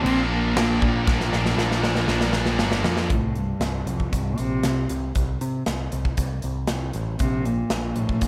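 Angsty and cathartic, this quiet-loud alternative rock excerpt at 117 BPM pairs an intimate, nasal cello melody, with light vibrato, an airy bow and slapback echo, with a growling overdriven electric bass and a big, punchy acoustic drum kit with bright cymbals, while a high-gain distorted guitar and a thick background fuzz guitar play a riff until 3.1 s, where a drum fill that began at 1.1 s ends, leaving cello, bass and drums to carry the next section in light studio reverb.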